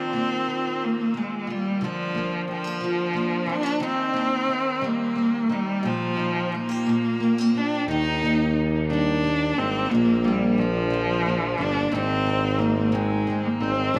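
Tender and romantic, this six-eight pop ballad sets a bright, focused bowed cello melody with vibrato against a double-tracked, picked parlour steel-string acoustic guitar with fresh strings. Both carry dub echo, and a warm, roomy tuba joins on the bass line at 7.9 seconds. The echo-heavy mix sits in a moderate plate reverb, and the cello and tuba both have a distant quality.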